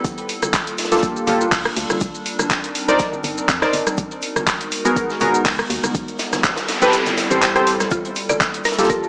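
Swung sixteenths drive this hypnotic deep house excerpt, where an up-front, overdriven electronic kit of handclaps, hi-hat, rim click and shaker joins a deep, overdriven electronic kick over a hollow, organ-like FM bass, with ringing congas and a crisp fusion kit with a high-tuned snare in the background. A warbling lo-fi pad holds dark minor chords, and detuned sawtooth analog keys stab up front with chorus, phaser and tape echo from 0.9 seconds. A noise sweep rises from 6.2 seconds, and the kick drops out beneath it at 6.9 seconds. From 7.9 seconds a woody, mallet-like synth pluck arpeggiates, the whole set in echo-chamber reverb with vinyl crackle and a small-speaker sound.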